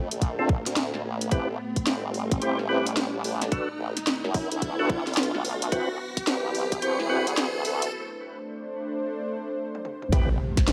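Glitch hop with a gritty, funky swing, built as a rising passage where a riser climbs to 7.9 seconds, a break and a drum fill follow, and an impact lands at 10.1 seconds. An up-front formant-sweep wobble bass with tube saturation, a tight electronic kick and a layered drum kit with a cracking snare, hi-hat and toms drive the groove. A percussive tonewheel organ with key click, overdrive and a slow rotary speaker punches out stabs over a deep, moody analog pad shaped by a filter sweep.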